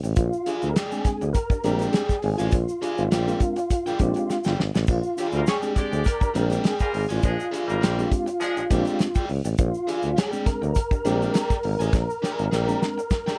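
Energetic and strutting, this dry, close 1970s-style funk excerpt at 102 BPM in Bb mixolydian sits on a Bb13 chord and is driven by an up-front soul drum kit with a fat snare, a tight kick and dark cymbals, plus drum fills at 4.3 and 11.9 seconds, alongside a warm, close-miked tuba bass, crunchy overdriven guitar, mellow tine electric piano stabs and a grainy tube shaker in the background, while a round, dark tonewheel organ carries the melody through chorus vibrato and a slow rotary speaker, and a clear, tight horn section in octave doubling adds a second line from 5.3 seconds.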